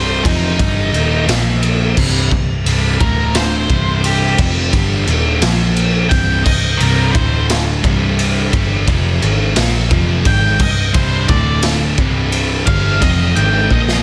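Dark and angsty, this slow 6/8 quiet-loud alternative rock excerpt in C minor at 58 BPM sets a dark, fuzzy octave-fuzz lead guitar solo over a background crunchy overdriven guitar with slapback echo, two very quiet sludgy distorted guitars (one double-tracked), a round foam-muted vintage electric bass, and an up-front, boomy, gritty garage drum kit that enters at 0.2 seconds and closes with a fill at 13.7 seconds, all in a big arena sound with concert hall reverb.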